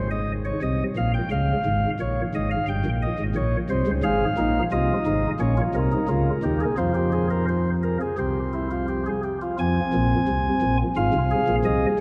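A soft chamber organ on flute stops, with chiff and chamber voicing, sits up front and plays alone throughout this contemplative yet driving baroque-style three-part fugue at 87 BPM in 4/4, ranging from G1 to Ab5 and settling into F minor from 4.0 s as chords such as Db, Gdim, Csus4/F and C lead to Fm, all bathed in a cathedral reverb with a 6.3-second decay in a vast, echoing space, in a passage cut from a longer piece.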